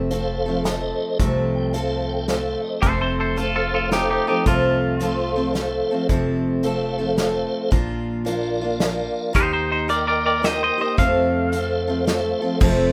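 A rough home-demo mix with moderate studio reverb carries this nostalgic, sunny honky-tonk and classic country fragment in three with a swung feel, where a bright, full-bodied dreadnought acoustic guitar with audible finger squeak, a woody, thumpy gut-string upright bass, and an up-front acoustic drum kit played with bundle sticks underpin a piping, scooped tonewheel organ with key click, chorus vibrato and fast rotary speaker that adds a fill at 1.2 seconds, while a twangy, compressed electric guitar with tape echo plays a second line from 2.8 seconds and again from 9.4 seconds.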